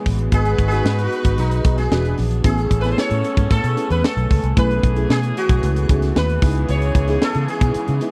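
Polished 1980s jazz-funk pop with a glossy, urban mood at 113 BPM, this short cut sets a buzzing, shimmering plucked sitar melody over a tight funk drum kit with a high-tuned snare, a dark, foam-muted fingered electric bass up front, a dreamy FM electric piano with a soft pad layer colored by phaser and ensemble chorus, smooth bowed strings holding sustained chords in the background, and a distant horn section adding a second line from 0.3 seconds, captured in a dry, close studio sound as the harmony moves through G#m7, E7, Amaj9, B13sus4 and C#m7.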